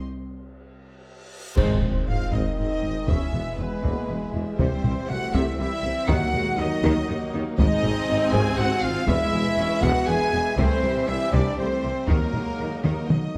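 Heroic and triumphant, this epic orchestral film-score excerpt moves at 120 BPM in 3/4, opening with the viola section before a reverse cymbal at 1.4 s leads into a huge, bright impact and a clash of dark cymbals and concert bass drum at 1.6 s, where a heavy-stick taiko ensemble drives onward. Smooth violins carry the melody, shadowed by a hollow concert flute and a second violin line, while French horns, trombones and a soft-attack string section hold sustained chords cycling through Ab, E, C and E-flat minor, and mellow trumpets add stabs. Rich cellos, woody double basses and a tuba anchor the low end, with the orchestra set in a moderate scoring-stage reverb.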